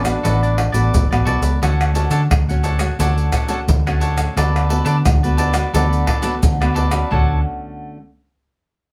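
Heard from further back in a wet studio, this sunny, playful samba and choro fragment in D major at 87 BPM opens with a bright, forceful jazz-style trombone solo of vibrato-laden, scooped notes bathed in plate reverb that falls silent at 1.1 seconds, while a crisp picked cavaquinho and a full-bodied fingerpicked classical nylon-string guitar play through D6, Dmaj7 and Bm7/D over a dark, round, punchy foam-muted vintage electric bass and up-front soft-handed maracas, pandeiro, tamborim and deep surdo, the guitar lingering alone until 8.0 seconds.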